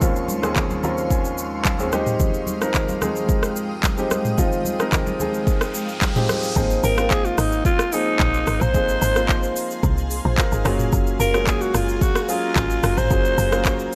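A dry, up-front mix carries this relaxed, soulful amapiano passage at 110 BPM in Ab major, where a polished grand piano accompanies and plays a fill, a cloudy, detuned granular pad pumps softly in the background, and an electronic afro-pop kit with deep kick, smooth hats, handclaps, rim clicks, shaker and toms drives alongside bright, soft-handed congas. An electronic riser from 5.3 seconds leads into the drop at 6.6 seconds, where the congas have dropped out and a woody, punchy log drum bass enters. Moments later, at 6.8 seconds, a breathy, raspy alto saxophone takes the solo melody with vibrato and delay.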